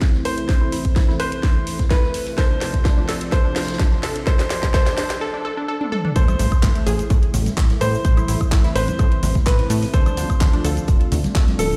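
A punchy, up-front electronic kick drives this dreamy, bittersweet progressive house excerpt at 127 BPM in A minor, joined by a cracking house drum kit with handclaps, shaker, toms and woodblock, a very quiet brushed jazz kit, a thick, warbling sawtooth pad and detuned, wave-folded unison pluck arpeggios that both pump with the sidechain, a bright baby grand piano melody with tape echo, and a soft, pure FM bell adding a second line in the same register, building through drum fills and a short break before the drop at 6.2 seconds brings in a funky, evolving analog bass, ringing hand-struck congas in the background and a faint electronic impact, all set in a stone-room reverb over Amadd9 and Dm7 chords.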